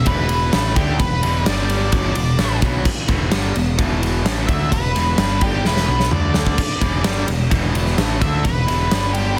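A dark, fuzzed-out lead guitar solo runs through this angsty, cathartic stretch of quiet-loud alternative rock, riding over a tight, bright, double-tracked riff guitar and a growling, overdriven bass. A big acoustic drum kit sits up front in a bright stone room, with a fat snare, a punchy clipped kick, crashes and ride, and a fill from 5.7 to 6.6 seconds. The chords move among E minor, G and D, and the whole short cut is packed into a dense, heavily limited modern master with light reverb, plus a plate reverb on the lead.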